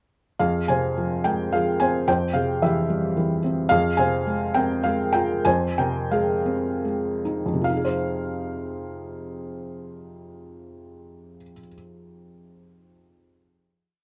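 Classical solo piano in a cool, moody F minor, with a felt-muted upright piano playing a lyrical, motif-based melody in song-like phrases over a broken accompaniment, moving in a rubato 3/4 between 75 and 114 BPM, slowing from 3.7 to 7.7 seconds before settling on a final chord, its intimate, mellow tone heard up front with audible action noise in a moderate studio reverb.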